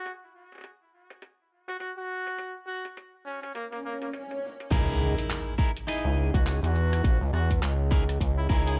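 Glitch hop at 103 BPM in C# dorian, funky and playful with a swung 16th feel, cut from a longer piece. A distant, roomy trumpet with light vibrato carries the melody through delay over a compressed, pitched-down, gritty sampler-style boom bap kit of hi-hat, rim click, handclaps, shaker and crash, its hats, snare, percussion and cymbals softened by low-pass filtering, while an electronic swell enters at 3.8 seconds. At 4.7 seconds the drop arrives on a C#m69 chord with an impact, a punchy layered electronic kick, an aggressive, saturated sawtooth synth bass up front, and bright, picked clean electric guitar stabs treated with 12-bit sampler grit, sidechain pumping and delay, set in a digital ambience.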